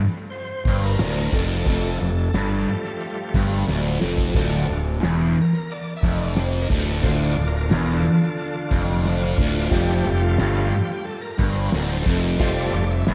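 A dreamy mix soaked in a lush hall reverb gives this short psychedelic rock passage, cut from a longer piece, a mysterious and trippy haze. At 89 BPM in a straight 4/4, a bright tonewheel organ with key click, light overdrive and a slow rotary speaker holds full, shouting sustained chords and carries the solo throughout. A cloth-damped kit of hi-hat, kick and snare sounds thuddy and dark, with a fat snare, a tight kick and a rolled-off top, and it drops in a brief fill near 3.7 seconds. From 0.7 seconds a thick, double-tracked fuzz guitar sits up front with a distorted, phased riff low in its register, alongside a round, overdriven fingered electric bass. The harmony moves from Fadd9/D to Dm and settles on Fadd9 at 9.7 seconds.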